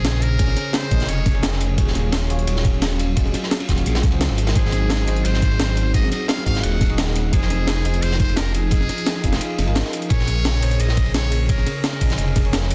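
A straight, rolling breakbeat drives this soulful liquid drum and bass excerpt, built from two layered kits: a gritty, compressed sampler-style kit with a high-tuned snare, hi-hat and ride, and a crunchy, saturated acoustic kit with dark cymbals and a rolled-off top, both set in studio reverb. A thumpy electronic kick enters at 0.4 seconds and briefly drops out between 9.4 and 10.1 seconds, while a deep, rumbling detuned saw bass sits up front with a beating, dark weight. A clean tine electric piano, played through a combo amp and bathed in lush chorus, carries the harmony through rich minor ninth, eleventh and seventh chords. Behind it, an airy, breathy pad swells in slowly with a moving notch and sidechain pumping, staying soft and mellow in the background. A jazz-style trumpet with a metal mute takes the solo, buzzy and thin yet brilliant, with scooped notes, light vibrato and a dub echo trailing its phrases. 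The mix is dense and heavily limited, with a light, small-room ambience.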